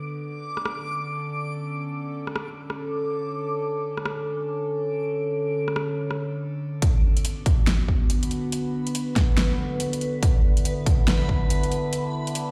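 A resonant sawtooth-and-sine drone with moving overtones and a chorus sheen opens this meditative, heavy deep dubstep excerpt, its filter sweeping through the first 6.8 seconds while a dreamy, reversed granular texture swells softly above it, and a tape-warm deep house kit of fat snare, metallic hats and rim clicks slips in at 0.6 seconds over a swung half-time feel. At 6.8 seconds the drone settles onto a B minor chord and a punchy, up-front electronic kick joins until 11.4 seconds as the music builds. The whole excerpt sounds as if played on a big sound system in a bare room, wrapped in a lush hall reverb.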